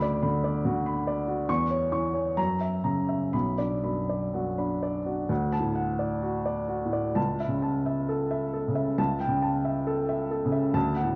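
A solo baby grand piano opens this short fragment of a romantic classical character piece. It sits up front with an open tone and long sustain, moving in a flexible rubato through a passionate, bittersweet first phrase before a new section begins at 5.3 s and carries on until 11.2 s. The recording has a worn, warbling cassette quality, with drifting pitch and muffled highs, all set in a wet recital hall reverb.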